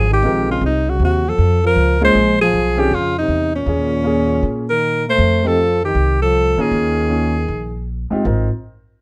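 Alto saxophone, trombone and upright bass start together in this relaxed small-group swing and bop fragment, cut from a longer piece, with the concert grand piano joining at 0.2 seconds. The clear, close-miked alto carries the melody up front with a light vibrato, while the mellow trombone plays a second line beneath it with a similar gentle vibrato. The pizzicato upright bass sounds woody, dark and thumpy, sitting prominently in the mix, and the piano adds natural-toned accompaniment with a deep low end. The swung harmony moves through a diminished chord and a Bbm9 into suspended and ninth-chord colours before settling back on Ab6. The horns drop out at 7.9 seconds, leaving bass and piano to ring on briefly in a light reverb until 8.5 seconds.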